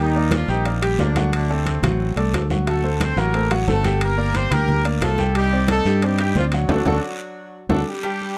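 Close, detailed microphones and light reverb frame this driving, danceable salsa excerpt at 179 BPM in 4/4, where a warm horn section with light vibrato and octave doubling carries the melody over a clear, polished baby grand piano, a round, dark fingered electric bass up front, ringing congas in the background, close, dry metal-shell timbales with agogo bells, and a raspy guiro, as the chords move from Ebmaj7 through D7, Gm7 and Cmadd9 to a band accent at 6.7 seconds and a drum fill at 7.4 seconds.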